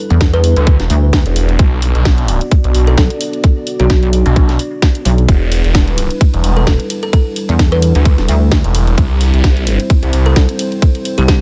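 A dry mix with little reverb carries this swaggering, gritty bass house cut in E minor at 130 BPM, its 16ths given a light swing and its chords moving from Em7 through Bm and back to Em7 before landing on C. Up front, a tight electronic kick pushes beside a heavy, pulsing pluck wobble bass that is saturated and chorused, while a swirling, thick phased saw bass joins at 0.6 s and drops away at 10.3 s. Lower in the mix, a garage kit adds hi-hat, ride and a cracking snare, a moody analog pad holds sustained chords with a moving notch and sidechain pumping, and a woody, hollow kalimba plays short melodic plucks through tape echo.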